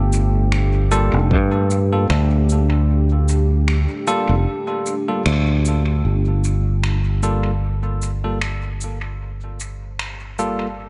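A slow 76 BPM groove in 4/4 with a light 16th-note swing anchors this meditative, spacious ambient dub excerpt in G minor. A growly, punchy fingered electric bass sits up front, overdriven electronic cabasa and finger snaps are treated with dub echo, and a single deep, tape-warm electronic kick sounds at 1.3 seconds. A dark, detuned sawtooth pad with chorus and a slow attack sustains a Gm9 chord, while a bell-like tine electric piano plays clean, filtered stabs with dub echo from 0.9 seconds; after a brief band accent, the second section opens at 6.0 seconds with a filter sweep on the pad, all set in a light digital ambience.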